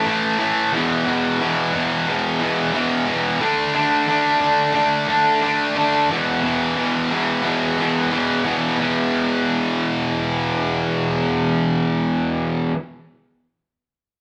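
A bright, overdriven electric guitar, picked, double-tracked and up front, takes the solo from 0.0 to 12.8 seconds in this heavy, aggressive rock fragment cut from a longer piece, moving through A5, E5, D5 and E5 power chords between E2 and D4 at 89 BPM in a straight 4/4, with a new section arriving at 8.8 seconds and light reverb from a band playing live in one room.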